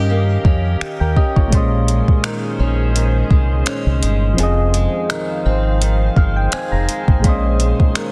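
Contemporary R&B at 84 BPM in Bb dorian, with a moody, late-night feel: a mellow, chorused electric-piano-like synth keys part carries the accompaniment and adds a fill from 5.8 to 7.2 seconds, over a glassy FM pad with ethereal sustained chords, dark, boxy fingerpicked steel-string acoustic guitar arpeggios through digital delay, a round, punchy dub bass, and an up-front electronic drum kit of finger snaps, metallic hi-hat and soft kick that enters at 0.4 seconds, all moving through Eb7, Bbm11 and Fm7 in a dense, heavily limited mix with light reverb.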